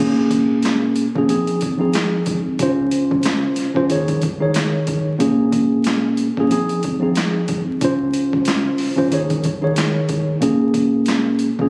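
Boom-bap hip-hop in Bb minor at 92 BPM with a 16th-note swing, this moody, tough excerpt sets a mellow, clean tine electric piano up front cycling Bbm7, Fm7, Dbmaj7 and Eb7sus4 over a deep, very quiet sine-and-triangle sub bass, while a gritty, pitched-down sampler-style kit with a thumpy kick, high-tuned snare, hi-hat and handclaps enters at 0.3 seconds with overdrive, all heard as if recorded on a phone in the room, with club reverb, vinyl crackle and light reverb.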